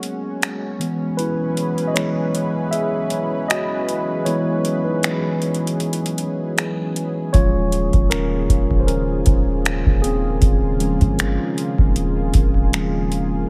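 Contemporary R&B at a slow 78 BPM in 4/4, with a light swing on the sixteenths, this moody, longing excerpt is drawn from a longer piece. A mellow tine electric piano sits up front and carries a solo across the whole passage, moving through suspended ninth chords from G#9sus4 to F#9sus4 and later D#9sus4. Beneath it, a lush, detuned sawtooth unison pad holds sustained chords with a slow attack, long release and chorus, thickening the harmony. A booming analog drum machine plays throughout with a deep kick, metallic hi-hats and finger snaps. The opening stretch is a break, and at 7.3 seconds a clean, sine-like 808-style bass enters low and dark, its fast attack decaying into a boomy sub tone. Light reverb and digital ambience lend the mix a soft sense of space.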